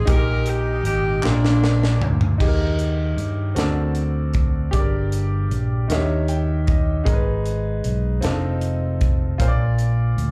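Heard through a club PA with a small room's reverb, this brief cut from a slow, uplifting gospel piece in 6/8 opens with an edgy, close-miked saxophone section carrying the melody with vibrato and a slapback echo until 2.4 seconds. A clear concert grand piano with deep bass, long sustain and its own slapback echo accompanies throughout and adds a fill at 5.9 seconds, over a dark, round fingered electric bass sitting up front. A fusion drum kit with bright cymbals, a high-tuned snare and a punchy kick plays a fill from 1.2 seconds, while a crisp, dry group handclap sits briefly in the background, giving the soulful passage a live, churchy lift.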